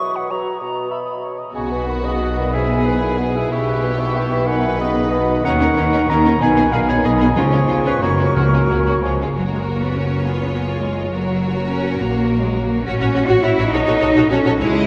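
A spirited, graceful classical excerpt in a rubato 3/4 opens on woodwinds alone, with mellow cor anglais, pure silver flute and a vintage-toned clarinet carrying second lines over a distant bassoon. Around 1.5 seconds the strings and a dark, roomy French horn section enter, as the lush violin section carries the melody above bowed violas, cellos and an up-front double bass section. The key moves from B major to F# major at 5.4 seconds, a hard-mallet timpani barely surfaces around 7.4 seconds, and after the woodwinds drop out the strings and horns finish inside a wet cathedral reverb.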